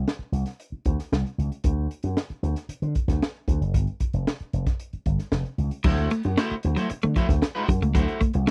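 A bright, punchy slap bass with an envelope filter opens this strutting, energetic funk cut at 114 BPM in D mixolydian, joined almost at once by a crunchy, saturated breakbeat kit with a high-tuned snare and dark cymbals, the harmony moving to Fsus2 and then D9 as two electric guitars arrive at 5.8 seconds (a twangy, slightly broken-up part bathed in lush chorus and a clean, compressed, picked riff) in a dry, close 1970s-style studio sound.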